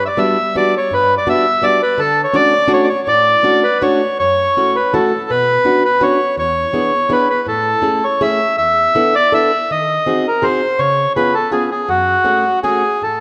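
Charming and whirling, this rubato musette waltz fragment sets a reedy, dark, vintage-toned bandoneon melody up front over a full-bodied, fingerpicked jumbo steel-string acoustic guitar accompaniment, both in a moderate scoring-stage reverb, with the harmony turning to a new section at 4.2 seconds.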